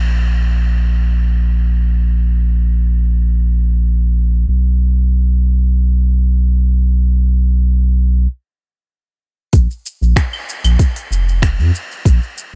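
A deep, round sub bass carries this organic downtempo fragment, its sine-like tone sustained, mellow and sitting up front from the very start. For the first stretch the bass holds the space nearly alone, its fast attack giving each note a clear edge, before a stop between 8.3 and 9.5 seconds clears the way. At 9.5 seconds a soft, tape-warm electronic kick arrives up front beside it. With the kick comes a hushed organic electronic kit of claves, finger snaps, crisp hi-hats and shaker, low-pass filtered and tucked far beneath the bass and kick. The sound is dry and close, with little reverb, leaving a warm, mystical mood in this brief section cut from a longer piece.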